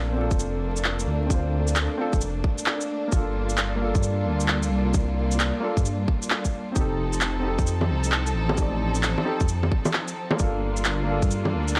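A woody upright piano, a lush bowed string section with smooth vibrato, and a deep, rumbling detuned saw bass open this melancholic, rainy future garage excerpt in G minor, all three pumping to the sidechain while the piano trails tape echo and the strings carry a vintage 12-bit sampler grit. At 0.3 seconds a tight, layered electronic kick arrives with up-front shaker, handclaps and bongos, all in studio reverb, driving a swung 16th-note groove at 132 BPM. Chords move from Bbmaj7 through Gm7 and F7 back to Gm7, set in a dry, gritty hardware recording dusted with vinyl crackle.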